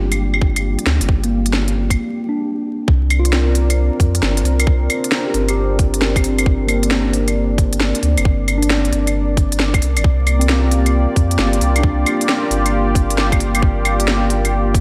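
Vinyl crackle and a light, digital ambience frame this wistful, nocturnal future garage cut, moving at 134 BPM in 4/4 with a 65% swing on the 16ths over a Gm7 chord. A dark, detuned analog pad with chorus and a round sine sub bass sit beneath a mellow tine electric piano carrying tape echo, all three breathing with sidechain pumping. An organic electronic kit of woody snare, crisp hi-hats and claves enters at 0.1 seconds, and a tight, tape-toned electronic kick arrives up front at 0.4 seconds, both heard in a large room. A faint, flickering granular texture glimmers only through the opening 2.0 seconds, giving way to a brief break before the next section settles in at 2.9 seconds.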